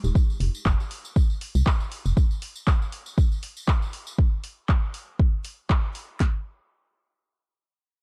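An up-front, overdriven deep house drum kit with a deep kick, punchy snare and handclaps, roughened by vintage 12-bit sampler grit and layered with a quieter, equally gritty kit of handclaps and hi-hat, drives this moody, swung deep house excerpt, while a hollow, percussive organ-like FM bass with sidechain pumping plays until 2.1 s and a jingly acoustic tambourine sits low in a small room until 4.2 s, set in a dark, dry production.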